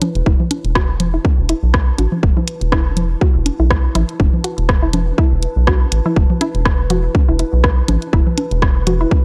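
Minimal techno excerpt with a sparse, quirky mood, cut from a longer piece and built on a single suspended chord. An overdriven, punchy electronic kick sits up front beside a rubbery, hollow square-wave bass with sidechain pumping, while an overdriven house kit adds hi-hat and rim click and tape-echoed electronic bongos, congas and rim click bring an analog, tape-warm flavour. A juicy, squelchy blip pluck riff with 12-bit sampler grit, chorus and analog delay carries a filter sweep throughout, over a warbling, nostalgic lo-fi pad with chorus and reverb that pumps in the background, all in a dry, gritty hardware recording with digital ambience.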